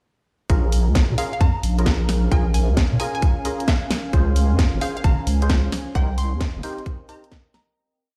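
Heard through a big sound system in a bare stone room, this short two-step garage piece carries a light digital ambience and a skippy, late-night mood. A tight, tape-softened electronic kick sits up front in a four-on-the-floor pattern. A garage kit adds a cracking snare and swung, skipping hats and rims. Beside it, a deep, wobbling bass with a chorus sheen plays a syncopated line, and mellow, organ-like stabs with chorus, cassette grit and tape echo punch out closely voiced syncopated chords over Bbm7, Dbmaj7 and Cm7. At 1.2 seconds a hollow, detuned square pluck enters with bright, bouncy phrases through analog chorus and tape echo. A dark, moody pad with built-in reverb and sidechain pumping stays in the background, holding slowly shifting chords as the track fades out from 5.3 seconds.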